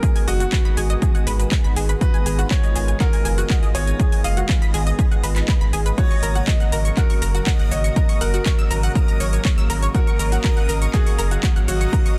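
Progressive house with an expansive, dreamy mood, heard as a short cut from a longer piece in straight 4/4 over a G#m7 chord that gives way to F# at 6.0 seconds. A bright baby grand piano carries the melody with a brilliant, intimate tone, audible action noise and long sustain, its notes trailing into dub echo. Beneath it, a lush unison pad holds thick, warbling sawtooth chords with chorus and sidechain pumping, while a filter sweep runs across the analog synth pad. An analog pluck plays detuned, snappy arpeggios through ensemble chorus and digital delay, and a reversed, granular texture swells in the background from 0.2 seconds. The punchy, overdriven electronic kick sits up front, joined by a house kit of handclaps, metallic hi-hat and shaker, both re-recorded in a large room, as a round, deep analog bass anchors the low end with sidechain pumping. The digital ambience frames a dense, heavily limited modern master.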